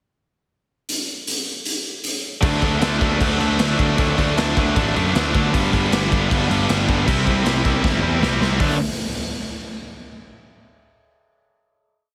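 Energetic and rowdy, this short punk rock piece in D mixolydian charges along at 156 BPM as a raw garage drum kit with a punchy kick and gritty, saturated crash, hi-hat and snare opens alone at 0.9 seconds before two tight, bright distorted guitars, one up front with driving eighth-note barre chords and one in the background with power chords, enter together with a growly, fuzzy picked electric bass at 2.4 seconds for a riff over D, G and C, capped by a drum fill at 7.8 seconds and a final D5 chord, all under a heavily compressed radio sound with light reverb.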